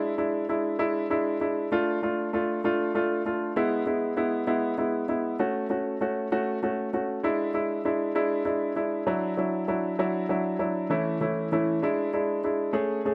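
A woody, intimate upright piano, close and up front with its action noise audible, plays alone through this heartfelt, swaying pop fragment in 6/8 at 65 BPM, moving through chords such as E7, Dm, A6 and Dadd9 within a modest middle range, bathed in light reverb for the full 13.1 seconds.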